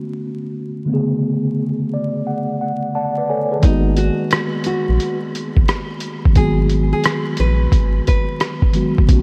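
Lo-fi hip hop at 88 BPM with a swung 4/4 feel and a melancholic, reflective mood, opening on a mellow tine electric piano over a Bm9 chord with a fill from 1.6 seconds, before a round, deep analog bass, a muffled, pitched-down sampler-style drum kit with a thumpy kick, hi-hat and rim click, and a fingerpicked nylon-string guitar melody all enter at 3.6 seconds on G#m9, set in light reverb and digital ambience with vinyl crackle, in a fragment cut from a longer piece.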